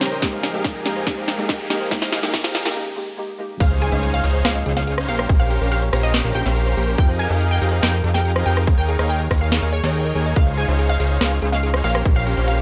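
Emotional and dreamy, this future bass excerpt moves at 142 BPM in a half-time feel, set in Bb dorian. It opens with a build-up where a soft, round pluck with chorus and delay and an airy, breathy pad sit behind a tine-like, thumb-piano-style synth pluck playing mellow arpeggios in the background, while huge, lush supersaw chords carry a riff with a cassette-tape colour, all pulsing with sidechain pumping. A trap kit with a sharp snare, metallic hats, rim clicks and crashes plays a fill under an overdriven, hard-clipped electronic kick, and a very quiet riser and impact run from 0.7 to 5.3 seconds, bridging a brief break. At 3.6 seconds the drop arrives, bringing a punchy, bright unison pluck melody treated with phaser and delay, and a fat, thick analog bass with a detuned sawtooth tone and an evolving filter sweep sitting up front. The chords cycle through Fm11, Eb9sus4, Dbmaj9 and Bbm69, and the mix has light reverb with a digital ambience and a high-pass filter.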